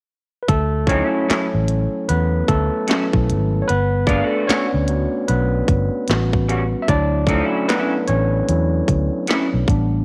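A barky, overdriven tine electric piano opens this sensual, smooth neo-soul R&B passage cut from a longer piece, and it takes a gritty solo through a combo amp over a swung groove moving from Dmaj9 to Gmaj9 and A13. Up front beside it sit a dark, round, foam-muted fingered electric bass and a glitchy electronic drum kit with a tight kick, tiny snare, clicky hats and handclaps. From 0.9 s, a slightly broken-up, lo-fi electric guitar through a small old amp adds a compressed second line with analog chorus, all set in light reverb.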